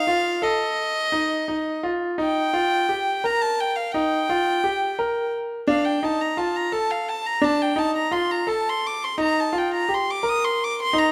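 A moderate scoring-stage reverb, about 1.7 seconds long, surrounds two up-front instruments with a spacious halo in this short cut from a longer contemporary instrumental piece. The music moves at 171 BPM, counted in eighths, in a straight 5/8 metre in Eb lydian, and the mood is shimmering and restless. A single bowed violin carries the melody between Eb5 and Eb6, its tone clear and pure with a soft attack, an airy bow and a floating quality. A bright concert grand piano plays arpeggios between D4 and Bb4, brilliant in tone with a deep bass and short sustain. Both parts play together from the start to 11.1 seconds. The harmony opens on F7, then at 2.2 seconds settles onto Ebadd9, passes through Dm and returns to Ebadd9.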